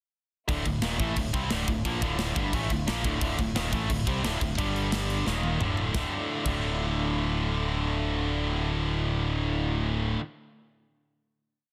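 Driving straight 4/4 at 176 BPM in D minor, this short, dark and aggressive heavy metal piece pairs an up-front, tight distorted guitar power-chord riff with a scooped, high-gain guitar tucked in the background and a growly, direct fingered electric bass doubling the riff in eighth notes, while a polished metal drum kit with bright cymbals, a tight kick and big-room air plays a fill at 5.3 seconds before the band lands on a final chord at 5.9 seconds, and a very quiet, bowed string section with soft attack and light vibrato sustains chords beneath, all within a dense, heavily limited modern master.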